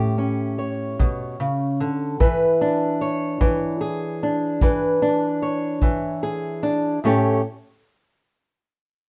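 Soulful and laid-back, this short cut from a longer acoustic country blues piece moves in a relaxed, straight 12/8 feel, with a fingerpicked old ladder-braced acoustic guitar carrying the melody up front in a dark, boxy tone over chords moving from A7 to E7 and settling on A at 7.0 seconds. A tight, natural kick drum played with brushes joins at 1.0 second and drops out at 6.0 seconds, sitting in a small room, while moderate studio reverb gives the whole a gentle sense of space.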